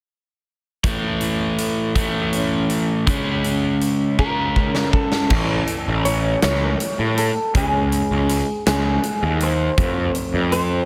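A bright, overdriven electric guitar riff leads this bittersweet, cathartic quiet-loud alternative rock excerpt in 6/8. It sits up front with a big, punchy acoustic drum kit with bright cymbals, which plays a fill from 4.2 to 5.3 seconds. Behind them, a lo-fi, slightly broken-up guitar through a small old amp picks arpeggios with tremolo, while a darker, fingered guitar from a similar amp carries a melody with subtle chorus from 4.2 seconds. At 5.3 seconds the riff gives way to a growly fuzz bass for the second section, in a small room with a dense, heavily limited modern master.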